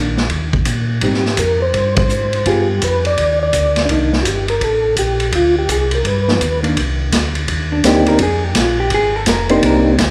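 A soft, flute-like tonewheel organ carries the melody with percussive attack, chorus vibrato and a slow rotary speaker in this late-night, bluesy soul jazz organ trio excerpt in C minor at 167 BPM, swung in 4/4. A second, round and dark tonewheel organ with audible key click plays the bass line, while a punchy vintage drum kit with dark cymbals sits up front and a clean hollow-body jazz guitar comps with fingered chords before taking a solo from 6.8 s. The band hits an accent at 1.9 s, and moderate hall reverb gives the trio a roomy glow over rootless minor-ninth and altered dominant harmony.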